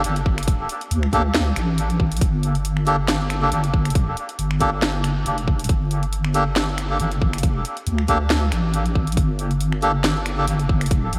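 Soaked in cavernous reverb and vinyl crackle, this dreamy, heavy deep dubstep piece in G minor moves at 138 BPM with a swung half-time feel: a deep, saturated wobble bass with chorus sits up front, a tight electronic kick arrives at 0.3 s beneath a garage kit of finger snaps, hi-hat and a cracking snare, and a reedy, nasal melodica plays stabs through dub echo over a Gsus2 chord.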